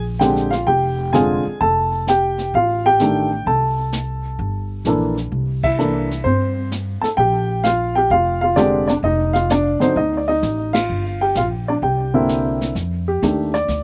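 This dry recording has very little reverb and an open-air quality, taken from a longer jazz piano trio piece that swings at 129 BPM in 4/4 in F mixolydian, tuned to A4 = 439 Hz. The upright piano carries the melody between D3 and A5, sitting up front with a woody, short-sustained tone and a touch of slapback echo. Beneath it, the pizzicato upright bass on gut strings gives a thumpy, warm foundation between F1 and G2. The brush kit, heard lower in the mix, brings brushed snare, hi-hat, ride with dark cymbals, a medium-tuned snare and a boomy kick, with a natural small-room character. The trio hits band accents at 5.5 and 10.7 seconds over harmony moving from Bb13 through Fadd9, C6, Gm7 and C9, and at 12.8 seconds the piano takes a solo, closing on an F13 in a swinging, warm mood.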